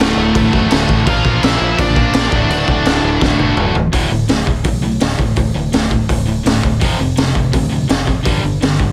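Punk rock at 167 BPM in a straight 4/4, this short cut from a longer piece has a rebellious, rowdy energy. A raw garage drum kit sits up front, with a boomy kick, a high-tuned snare, hi-hat, crash and toms that sound gritty, saturated and mid-forward, with a rolled-off top and a small-room feel; a drum fill arrives at 3.2 seconds. Two bright, overdriven, picked electric guitars play riffs in the background, while a fingered electric bass adds a dark, round low end. A high-gain lead guitar with a warm, distorted tone carries the melody over the opening chords of D and Bb until 3.5 seconds. From 3.9 seconds the band drives through D5, F5 and G5 power chords, all under a light reverb.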